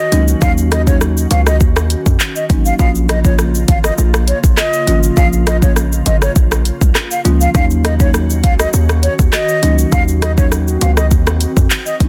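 Dancehall at 101 BPM with a tough, sultry mood, this short excerpt sets a breathy, hollow flute melody with delay and vibrato over a glassy, ethereal FM pad with chorus and sidechain pumping, woody rustic marimba accompaniment, a punchy, heavy 808-style bass up front, an electronic afro-pop kit with deep kick, handclaps, rim click and shaker, and very quiet egg shaker and timbales, all moving between Ebm7 and Bbm in a dense, heavily limited modern mix.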